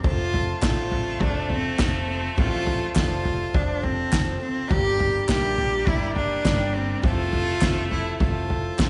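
A steady, straight 4/4 pulse at 103 BPM comes from a cloth-damped drum kit, up front with a fat snare, tight kick and toms sounding gritty and muffled, joined at 0.6 seconds by crisp, dry group handclaps in the background, while a fingered electric bass holds the low end under this uplifting indie folk cut in F major, moving from F to Gm and settling on Fmaj7. Up front, a rich, focused bowed cello carries the melody with vibrato, alongside a nasal, metallic stopped French horn on a second line. A picked steel-string acoustic guitar with fresh strings and finger squeak, a reedy, breathing pedal harmonium holding sustained chords, and a very quiet, brilliant grand piano fill out the building arrangement inside a moderate concert-hall reverb.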